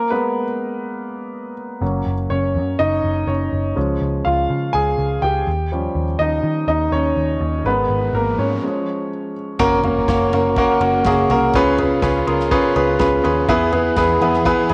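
A home cassette recording with moderate spring reverb carries this uplifting piano-driven pop excerpt in F# major at 123 BPM, where a clear, intimate grand piano with audible action noise plays the accompaniment from the start, a dark, foam-muted picked electric bass joins at 1.8 s, a very quiet electronic riser and impact bridge into the second section, and at 9.6 s an acoustic drum kit played with bundle sticks and a lush, very quiet bowed string section with vibrato and portamento fill out the sound.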